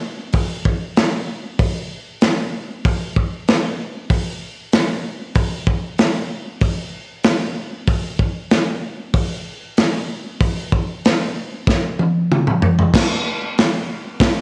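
Raw and swaggering, this short rock excerpt is cut from a longer piece and rides a straight 4/4 groove at 95 BPM. A crunchy breakbeat drum kit carries it alone from 0.3 seconds, with kick, snare, hi-hat, toms and crash cymbal all in play. The kit sits up front with a gritty, saturated character, a punchy kick, a medium-tuned snare and dark cymbals under a rolled-off top. A moderate echo-chamber reverb with a 1.7-second decay gives the hits a lingering tail. A drum fill at 11.7 seconds leads into a new section at 12.9 seconds, which runs until the drums stop at 14.4 seconds.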